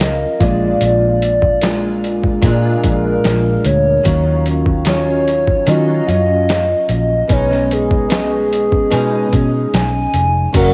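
Hazy and dreamy, this short cut from a longer indie and bedroom pop piece moves in a straight 4/4 through chords of A#7, D#m9 and B69. A hollow, woody synth lead carries the melody with a soft, clarinet-like tone, a noise layer, vibrato and a lush chorus. Up front, a picked steel-string acoustic guitar sounds full-bodied and jumbo-sized, with audible finger squeak and an ensemble chorus that gives it a warbly pitch drift. Underneath, a vintage muted electric bass is round, dark and punchy, thickened by transformer saturation. A lo-fi sampler-style drum kit of kick, snare, hi-hat and crash sounds pitched down, muffled and compressed, with a thumpy kick and a cassette-tape warmth. Only at 10.6 s does a flute-like, slow-blooming pad slip in behind the others, and light reverb with digital ambience wraps the whole homemade cassette recording.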